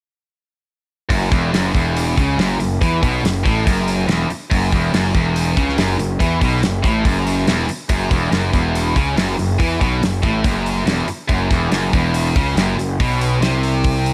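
A straight 4/4 pulse at 141 BPM drives this gritty, propulsive classic rock passage in F# minor, cut from a longer piece, with the full band arriving together at 1.1 seconds and holding a single F# minor chord until 14.1 seconds. The damped 70s drum kit sits up front with a dry, mid-forward acoustic sound, pairing a fat snare and tight kick with hi-hat under a rolled-off top end. Two picked electric guitars carry the riff in the same low register: an overdriven semi-hollow guitar with a hollow-body character colored by phaser, and a tight, bright distorted guitar placed forward in the mix. Beneath them, a picked electric bass growls with fuzz and overdrive, its direct-and-amped tone pushed up front. A small room reverb gives the group a close, compact space.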